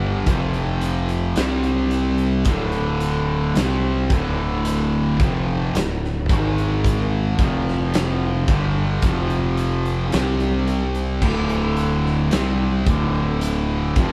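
A bright, double-tracked raw garage guitar with overdrive riffs through this ominous, heavy stoner and doom metal excerpt alongside two thick fuzz guitars sitting in the background, a growling, overdriven fingered electric bass, and a dark, acoustic big rock drum kit with a punchy kick and medium-tuned snare that enters at 0.3 s, all played live in one room with moderate studio reverb.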